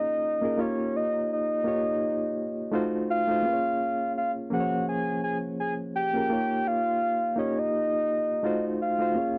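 A soft, round synth lead with a dark sub-octave layer and a touch of chorus sings the melody from the start over a reedy, clean electric piano pulsing with fast tremolo. This is a soulful, smooth R&B fragment at 84 BPM with a light 16th-note swing, tuned to A4 = 436 Hz and cycling through A#m7, D#9 and F7b9 for its 9.4 seconds. The dry, close sound of a 1970s-style studio, with light reverb, keeps both parts up front.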